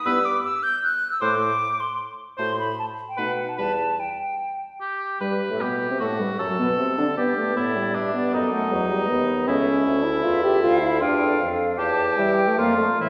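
In a quick 3/4 at 154 BPM with a rubato feel, this stormy, dramatic classical-period movement for wind quintet opens in E minor and turns toward D minor at 9.5 s, in a short passage cut from a longer piece. The hollow concert flute carries the melody across a range from C4 to G6, its pure tone marked by vibrato and tongued articulation. Up front, the oboe sings a second line that sounds distant and roomy despite its forward placement. The mellow clarinet sits in the background as accompaniment, while the close-miked French horn adds a warm, present accompanying voice and sits slightly above the others in level. The bassoon anchors the bass with a light vibrato, and the whole ensemble rings in a church or concert hall with a reverberant tail of about 1.7 seconds.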